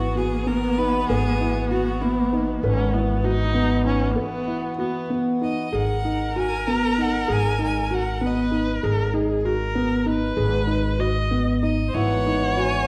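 Set in a restless 5/8 at 194 eighth-note beats per minute with a straight feel, this contemporary chamber piece in G# minor has a pensive, searching mood and is cut from a longer work. A felt-muted upright piano carries steady arpeggios throughout, its thick-felt tone soft, mellow and intimate, with the mechanical action noise faintly audible. Beneath it, a pizzicato upright bass sits up front on a low G#, woody and growly. A single bowed viola weaves a second line with vibrato and expressive portamento, while a solo violin states the melody in intermittent phrases, its clear, biting sound smoothed at the top by light vibrato. A reedy, breathing pedal harmonium holds sustained chords through the break that begins at 4.2 seconds, drops out as the harmony moves to G#m9 at 5.7 seconds, and returns on Esus2/G# at 11.9 seconds. The whole is wrapped in a wet recital-hall reverb with a dark, warm production.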